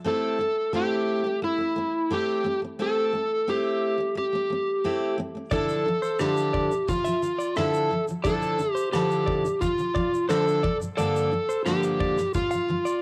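A dark, overdriven slide guitar with a cassette-tape grain carries the up-front melody in this reflective, wistful acoustic pop excerpt, over a full-bodied jumbo steel-string acoustic guitar picked with audible finger squeak, while at 5.5 seconds a scooped, compressed clean electric guitar adds high arpeggios and a distant, roomy indie drum kit of punchy kick, rim click and shaker joins under the same tape coloring, all set in light studio reverb with a home-cassette character.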